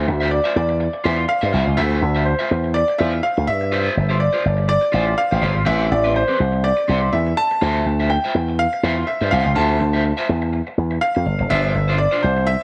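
A punchy slap bass with an envelope filter sits up front in this celebratory, glamorous disco passage, its bright, amped tone driving a lightly swung sixteenth-note feel. A clear concert grand piano carries the melody high in its register through a tape echo, while a dark, slightly broken-up electric guitar plays picked accompaniment colored by harmonic tremolo. The harmony moves through Dm9, G7sus4 and Am9 under light reverb and studio ambience, in a short cut from a longer piece.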